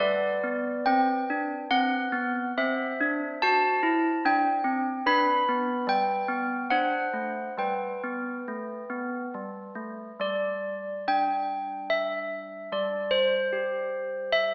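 Handbells carry this short classical tune alone, their hard clappers striking bright, ringing tones that sit up front across a span from G3 to B5. The mood is festive yet serene, moving in an unhurried triple metre with a straight feel. The harmony rests on simple, familiar changes, stepping from G through C and D7 before settling home, and the opening phrase returns at 10.2 seconds. After 12.7 seconds the chords fall away and the bells carry on unaccompanied by harmony. A wet reverb surrounds the bells, heard from further back in the room, and the sound is narrowed to the thin, boxy colour of an AM radio. The passage is cut from a longer piece and runs 14.5 seconds.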